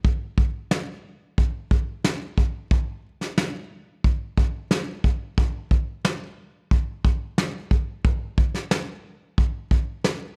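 A straight 4/4 pop pulse at a moderate pace drives this short fragment cut from a longer piece. The only instrument is a soft acoustic drum kit played with brushes, heard from 0.0 to 10.2 seconds, with a punchy kick and a medium-tuned snare carrying the whole groove. The kit sits up front in a small room, and very little reverb keeps its sound close and dry. The production has a dark, warm tone that lends the plain beat an anthemic, warm mood. The passage stays within a single section from start to finish.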